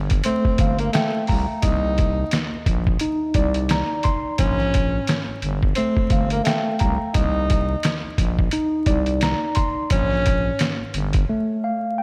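A swung boom-bap groove at 87 BPM in 4/4 drives this reflective yet tough hip-hop excerpt in C minor, built on a gritty, pitched-down sampler-style kit with a thumpy kick, a medium-tuned snare and hi-hat, compressed and sitting up front. Underneath, a growling FM bass with a thick, sine-based tone and fast attack holds sustained low notes, also placed forward in the mix. A mellow tine electric piano, clean and direct, carries the chords through Gm9, Cm9 and Bbm7 before settling on a G7sus2 near the end. Over it, a breathy tenor saxophone plays a jazz-style solo line with vibrato, scooped notes and a soft, whispered, intimate attack, shaped by filtering and an analog delay. Vinyl crackle, light reverb and a digital ambience frame the sound, and the drums drop out at 11.3 seconds, leaving the electric piano to ring until 12.0 seconds.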